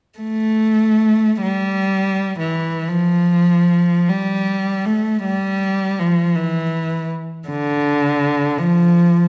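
Lonely and mournful, this classical fragment from a longer work features one bowed cello alone, playing freely in 6/8 with expressive rubato at 32-57 BPM, its rich, smooth, even tone and vibrato sitting close and up front in the span from D3 to A3 from 0.2 to 9.3 seconds, moving into a new section at 2.9 seconds amid a wet recital-hall reverb.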